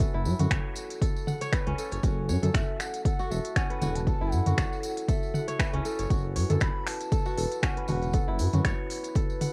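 Earthy and driving, this short afro house excerpt sits on a single minor-seventh chord, with a punchy, layered electronic kick and a deep, rumbling detuned saw bass pushed up front, the bass warmed by tube saturation and pumping against the kick. A fingerpicked, ringing kora plays crisp arpeggios through tape echo, a moody analog pad holds dark, slow-attack chords under chorus and phaser, and a breathy bamboo bass bansuri carries the melody with vibrato and tape echo until about 8.4 seconds. An afro-pop kit of finger snaps, crisp hi-hats and toms swings lightly alongside a jingly, close tambourine, and the whole piece has the tape-worn character of a home cassette recording in a small room.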